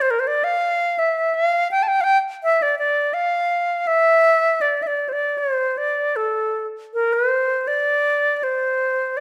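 The rhythm moves in a loose three-beat metre, with uneven beats and a rubato feel that lets the line breathe freely. This brief Celtic folk fragment, cut from a longer piece, carries a haunting, mournful mood. A wooden flute plays alone for the full 9.2 seconds, its tone reedy and airy with a bright edge, keeping between A4 and A5. Its notes are tongued and shaded with vibrato, and the close-miked flute sits up front in the mix. A moderate recital hall reverb with a 1.5-second decay surrounds it, and the instrument is tuned slightly low, to A4 = 438 Hz.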